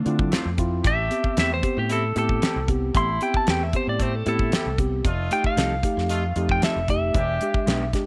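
Brooding and smoky, this straight-eighth soul blues in A minor moves at 114 BPM, with a lightly driven, slightly broken-up lead guitar carrying a compressed, up-front solo over changes from Dm7 and Am7 to F7 and E7#9. Beneath it, a fat-snared, tightly kicked 70s drum kit sits dry and polished alongside a round, punchy fingered bass, while a mellow tine electric piano adds clean accompaniment. A distant, roomy horn section holds sustained chords with light vibrato, and a background electric guitar colored by lush chorus adds dark stabs, all in a small room with light reverb.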